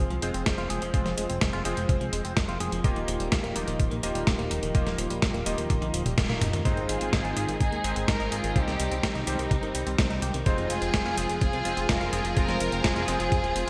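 A gritty, thumpy electronic kick and an up-front, dusty soul sampler-style kit with gated reverb drive this nostalgic, melodramatic italo disco cut at 126 BPM in F minor, where a glossy, chorused pulse-wave synth bass with tube saturation sits under a thick, warbling unison pad, clangy electric grand piano stabs with chorus and delay, and twangy clean guitar arpeggios in the background, until a drum fill from 5.7 s and a band accent lead, at 6.7 s, to a smooth, close studio violin section carrying the melody while the guitar takes a filter sweep, all set in a lush 1.9-second hall with bright 1980s-style digital sheen.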